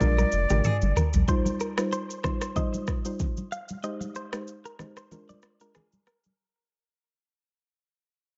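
An up-front electronic afro-pop drum kit with a deep, tape-warm kick plays a fill over the first 1.3 seconds of this breezy, sunny afrobeats excerpt at 94 BPM in Eb major, alongside a brief round sine sub bass and a breathy jazz flute with vibrato and delay that stops at 1.0 seconds, while a soft, dark chorused pluck, a clean direct-recorded electric guitar riff with spring reverb and delay, and damped, thick-skinned congas in the background carry on into a fade-out.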